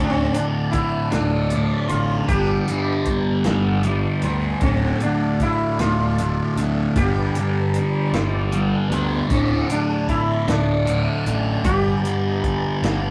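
Hypnotic and trippy, this short psychedelic rock excerpt moves in a slow 6/8 at 51 BPM, with an up-front, double-tracked fuzz guitar riff over a dark, overdriven bass and a punchy vintage drum kit entering at 0.3 seconds, while a bright, buzzing sitar carries the melody, a smooth tonewheel organ with slow rotary speaker holds chords in the background, and a barely audible tanpura drone shimmers until 6.7 seconds, all through a rough rehearsal-room sound with tube saturation over chords moving between D5, Gadd9 and Dm.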